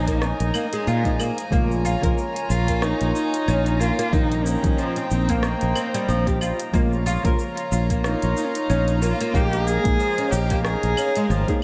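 Hypnotic and warm, this organic downtempo excerpt moves at 92 BPM in 4/4 with a swung sixteenth feel, settled in Bb dorian over chords that circle from Absus2/Bb through Bbm7 and Cm7/Bb. A bowed solo cello carries the melody with vibrato, portamento and a soft attack, trailed by analog delay, while a plectrum-plucked oud weaves woody, double-stringed arpeggios from 0.1 seconds, its notes scattered into a diffuse ambient delay. Underneath, a fretless electric bass sits up front with a warm tone, direct and amped, and a dark, detuned chord stab with ring modulation and a moving notch decays in the background through chorus and diffuse ambient delay. A distant, floating string section holds sul tasto chords high above, pumping with the bass and stab against a deep, tape-toned electronic kick. An overdriven electronic kit adds smooth hats, cabasa, claves and rim clicks, and a plate reverb of 2.1 seconds bathes the mix in a dreamy glow.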